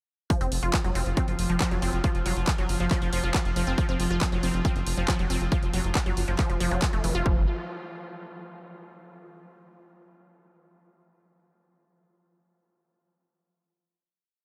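An overdriven, up-front four-on-the-floor kick drives this hypnotic, intense psychedelic trance piece at 138 BPM, joined by overdriven programmed claps and hi-hats, a deep rolling sixteenth-note analog bass, a punchy, warbling detuned pluck playing an accented acid riff through tape echo and sidechain pumping, and a bright, pulsing gated drone of sustained F5 chords with chorus, all within a dreamy cathedral-reverb space as the drop runs from 0.3 to 7.3 seconds before a final note rings out until 9.0 seconds.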